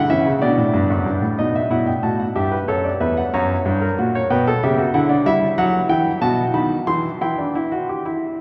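Lively and joyful, this short fragment from a longer classical piece is a baroque-style three-part fugue in a straight 6/8, played by a solo grand piano across its full 8.4 seconds. The piano sits up front with a smooth, vintage tone and short sustain, reaching from E2 up to C6 while the harmony moves through B7, E minor, F# and G/B before settling back on E minor. A wet cathedral reverb with a 5.4-second decay places it in a vast, echoing space.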